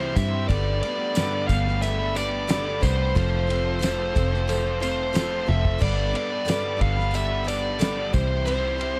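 An open-road, hopeful feel runs through this short folk rock and heartland rock excerpt, moving at 90 BPM in a straight 4/4 in G mixolydian. A dark, distorted lead guitar sits up front carrying the melody, while a double-tracked, crunchy overdriven guitar plays a riff beneath it and a jumbo twelve-string acoustic guitar adds shimmering, octave-doubled picked accompaniment. A round, foam-muted fingered electric bass stands forward in the mix, and a very quiet, flute-like tonewheel organ holds sustained chords through a slow rotary speaker, its key click just audible. The cloth-damped drum kit enters at 0.2 seconds with a fat snare, tight kick and dark cymbals, staying dry and in the background alongside a jingly tambourine, and a drum fill lands at 5.5 seconds. The chords move from C to Gadd9, then F, back to Gadd9 and to C again, all set in a studio ambience.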